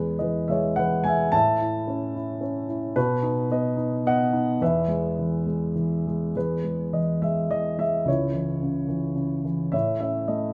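Light reverb frames a dark, mellow baby grand piano placed up front, playing alone across a short 10.5-second cut from a longer classical piece. The lyrical solo sits in E major and triple time around 100-112 BPM with a rubato feel, spanning C#2 to A5. Its sunny, hopeful phrase is stated twice, moving through E, A and B before turning to C-sharp minor at 8.1 seconds and settling on A.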